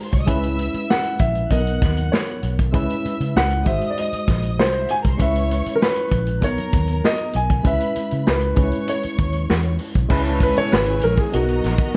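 A grand piano carries the melody in this smooth, cinematic stretch of lush 1970s-style soul, its intimate, natural tone revealing audible action noise, and it takes a solo from 10.1 s. Beneath it, a worn, slightly out-of-tune tine electric piano, lightly overdriven through its built-in speakers, plays the accompaniment over chords moving among C#m7, Bmaj7 and G#7. A foam-muted fingered electric bass gives a round, punchy low end, while an up-front vintage drum kit of kick, snare, hi-hat and crash has dark cymbals and a rolled-off top. A bowed studio string section adds a lush second line with vibrato, and from 10.5 s a very quiet phased string machine swirls in with bright sustained chords. The production is warm with light reverb, and the passage is cut from a longer piece.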